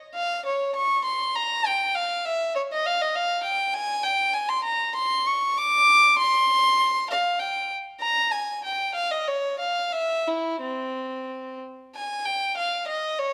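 A solo violin with a reedy, gut-string tone sits up front in a wet stone room whose reverb lingers around 1.4 seconds. This introspective, solemn fragment of a baroque-style suite movement for unaccompanied violin moves in a rubato 3/4 at roughly 88-101 BPM in F minor, with one bowed player shaping period-style phrases through light vibrato. The line spans C4 to D6 and shifts into a new section at 11.9 seconds before the fragment ends at 13.3 seconds.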